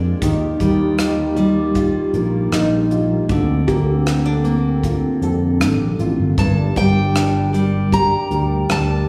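Intimate and reflective, this short excerpt from a longer acoustic folk-pop ballad moves at an unhurried 78 BPM in 4/4 with a straight feel, set in G minor over the chords Ebadd9, Bbmaj7/D and Gm. A thumb-plucked nylon-string guitar carries the accompaniment up front with a classical touch, while a growly, punchy fretless electric bass sustains the low end beneath it. A hollow, flute-like pad with a soft attack and chorus holds chords in the background, and a brushed drum kit, airy and polished with a punchy kick, sketches the pulse on hi-hat, kick and rim click from 0.2 s. Between 3.7 and 6.5 s, a felt-muted upright piano adds very quiet arpeggios on G4, its action noise audible in a mellow, natural tone. At 6.4 s a picked steel-string acoustic guitar enters with a high melody, and a moderate concert hall reverb places the whole ensemble a little further back in the room.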